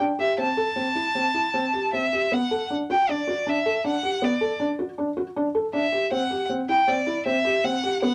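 Contemporary instrumental, restless and urgent at 157 BPM in 5/4, in which a felt-muted upright piano plays dark, intimate arpeggios with audible action noise beneath a clear, close solo violin carrying a smooth bowed melody with vibrato, the harmony moving from Am7 to a rootless Bm7 at 2.3 seconds and on to C at 6.1 seconds in a brief passage set in a moderate booth ambience and cut from a longer piece.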